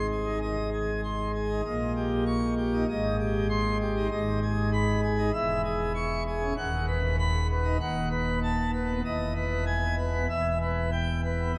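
A solo pipe organ on full plenum with mixtures opens this jubilant classical toccata at 97 BPM, its brilliant, romantic voicing sitting up front and spanning D#1 to Db6 as the harmony travels from Ab through Abmaj7 and G#m toward Emaj7 and Em, all bathed in a cathedral reverb with a 6.1-second decay in this short cut from a longer piece.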